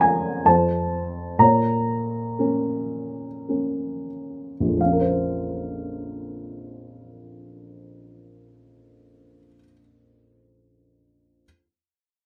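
Melancholic and dark, this short classical passage cut from a longer piece features a solo upright piano with a mellow, woody tone and short sustain, heard up front in light reverb, unfolding in a rubato triple metre that slows through the opening 4.8 seconds before settling onto a Bbmadd9 chord.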